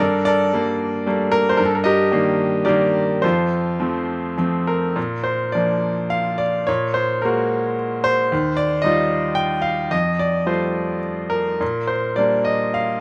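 Hopeful and sunny, this short cut from a longer classical piece features a lyrical solo piano in Bb major, moving in 3/4 at around 100-116 BPM with a flexible, rubato feel. A bright baby grand piano carries the whole 13 seconds alone, ranging from Eb2 up to G5, and sits up front with a brilliant, intimate tone and long sustain. Close, detailed microphones catch the audible action noise of the instrument, while light reverb adds a touch of space. The opening section moves through Gmadd9, Eb/G and F before a second section begins at 5.0 seconds on Bb. From there the harmony drifts through a colorful Gbadd9/Bb, then Ebadd9 and Fadd9, settling on Bb6 at 11.6 seconds.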